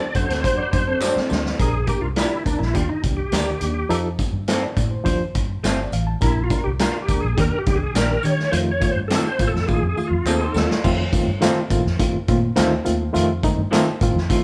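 A bright, key-clicking tonewheel organ with chorus vibrato and fast rotary speaker takes the solo from 1.6 to 10.8 seconds in this joyful, uplifting uptempo 1960s-style soul excerpt at 104 BPM, set over a barky, lightly overdriven reed electric piano with fast tremolo, a lo-fi picked guitar riff with spring reverb, slightly broken-up guitar stabs, a round, foam-muted bass, a gritty, punchy vintage drum kit with dark cymbals and fills, and tambourine and handclaps tucked in the background, with the band playing live in one large studio room.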